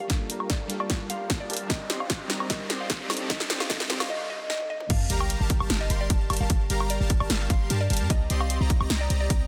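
A half-time 150 BPM pulse in 4/4 drives this bittersweet, lush future bass passage in G minor, where a hard-clipped, tape-warm electronic kick and a punchy, layered big-room kit of crash, hi-hat, snare, toms and woodblock sit up front over a deep, boomy 808-style bass with tube saturation, while a woody, round mallet-like pluck carries the melody with 12-bit sampler grit and delay, a smooth detuned supersaw riff pumps beneath a filter sweep, glassy digital keys accompany the build-up until 4.9 seconds, a very quiet riser and sub drop rise through a drum-fill build and brief break into the drop at 4.9 seconds, and an airy, dreamy lead with vibrato and portamento drifts in the background with arpeggios over the Gm7 and Cm7 changes in this dense, heavily limited excerpt from a longer piece.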